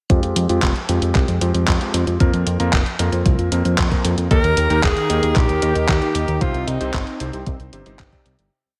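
A bright, vibrato-rich alto saxophone carries hook phrases through digital delay from 4.3 to 7.2 seconds in this nostalgic, bittersweet italo disco piece in F minor at 114 BPM, riding over a fat, detuned analog bass playing sequenced sixteenth notes, a thumpy four-on-the-floor electronic kick, clean 12-bit drum-machine handclaps and closed hi-hats in gated reverb, clangy dotted-rhythm electric grand piano stabs under a filter sweep, and a smooth, chorused analog pad that enters with the saxophone and sits in the background, all set in light digital ambience before a fade-out from 5.7 seconds.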